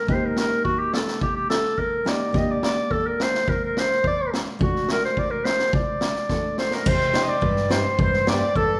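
A steady, straight 2/4 pulse at 106 BPM drives this festive yet bittersweet klezmer fragment, cut from a longer piece and moving through Eb, Gm, D, Cm and back to Gm. Up front, a street-band drum kit with a boomy kick, a high-tuned snare and dark cymbals sets the beat, and it plays a fill from 6.3 to 6.9 seconds that leads into the second section. A warm, classical-style clarinet carries the melody as a solo voice, sounding distant and roomy even while it sits forward. A fingerpicked nylon-string guitar, bright with fresh strings and full-bodied in its deep classical tone, supplies the accompaniment throughout. At 6.6 seconds a reedy, dark accordion enters with a smooth, full second line in dry tuning. The performance rings in a moderate recital-hall reverb, giving the ensemble the spacious sound of a church or concert hall.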